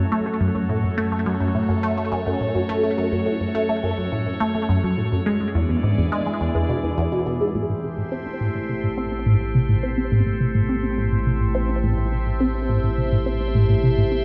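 An evolving wavetable pad and a resonant blip pluck open this expansive, hypnotic stretch of ambient, sequencer-driven space music, which is cut from a longer piece and moves at 105 BPM in a straight 4/4. The pad holds sustained chords with a slow attack and long release, its bright sine-based tone morphing under phaser and its own reverb, while the up-front pluck repeats a riff of juicy, squelchy detuned sawtooth and triangle sound, sharpened by ring modulation and colored with phaser, analog chorus and tape echo. The harmony begins in F# minor on F#m and moves to E7 at 5.3 seconds. At 7.5 seconds the music shifts to A minor on Am7, a round analog bass enters on a deep, wave-folded square and sine tone sitting low in the mix, and a filter sweep runs across the synth arpeggio sound to the end. A moderate plate reverb gives the dark production a spacious tail.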